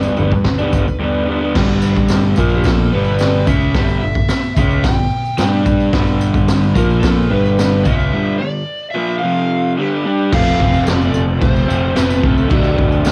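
Garage rock with a swaggering, rowdy edge, this short cut from a longer piece rides a straight 4/4 groove built on an up-front, double-tracked overdriven guitar riff and a saturated, gritty drum kit with a boomy kick and rolled-off top, both carrying cassette tape grit in a home recording with studio reverb. An overdriven slide guitar sings the melody above them, while a dark, round fingered bass and a jingly tambourine sit in the background. The chords move mostly between G and Bb power shapes, with a break from 8.1 to 10.3 seconds before the last stretch turns to F and lands on D.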